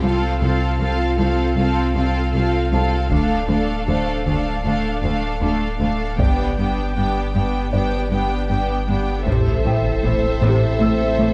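A dark, warm scoring-stage sound frames this tense, relentless hybrid orchestral and electronic film cue at 78 BPM in A minor, where lush bowed violins, smooth violas, rich cellos and a clean, deep sine sub bass carry F/C to Dm to G while a felt-muted upright piano with digital delay murmurs softly in the background, heavy taiko sticks join at 3.1 seconds, and at 9.3 seconds an impact lands on Am as distant French horns, a round evolving analog bass riff, a woody, very quiet double bass section and a huge sub drop arrive.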